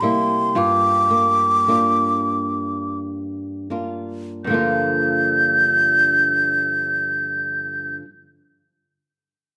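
A wooden flute and a flamenco guitar begin together at 0.0 seconds in this mournful, longing Celtic slow air, a fragment taken from a longer piece. The flute carries the melody high in its range, breathy and hollow with a soft attack and gentle vibrato, sitting up front and a little louder than the guitar. Beneath it, the dark acoustic guitar is fingerpicked in a flamenco manner, with small finger squeaks audible, moving from C7 to Gm7 in G minor. The feel is rubato in 6/8 at a very slow 25 to 38 beats per minute counted in dotted quarters, and the opening passage slows down until a second passage begins at 4.4 seconds. The tuning rests slightly below standard pitch at A4 = 435 Hz. Close, detailed microphones and light reverb keep both instruments intimate and present.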